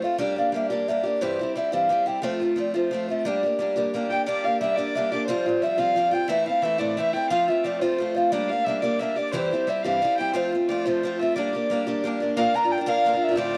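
Celtic folk jig in 6/8 at 118 BPM, set in G dorian with a dark yet lively, driving mood, cut from a longer piece. A mellow, hollow baroque flute carries the melody from the start, its pure wooden tone tongued and touched with vibrato, sitting at a distance in the mix. Underneath, a picked steel-string acoustic guitar plays the accompaniment up front, bright and boxy with a parlour character and audible finger squeak, colored by cassette tape. At 4.1 seconds a single bowed fiddle enters on a second line, quieter than the flute, with a nasal, reedy gut-string tone that also carries the cassette coloring. The chords move through Gm, C/G and F with turns to Fsus2 and Am, reaching Bb as a new section begins at 12.4 seconds. Light reverb and studio ambience frame this home recording made on cassette.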